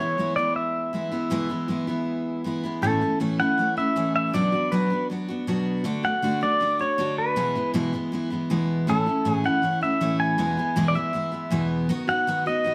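A sunny, easygoing country excerpt in A major at 159 BPM opens with a bright, clean pedal steel guitar carrying the melody over a full-bodied, picked dreadnought acoustic guitar, both up front from the first second. The compressed steel, played with fingerpicks, sings with slide and volume swells through a plate reverb, while the acoustic adds audible finger squeak beneath it. From 2.8 seconds the harmony moves through A, Bm, D and E before landing on B/D# at 11.9 seconds, all set in a moderate studio room.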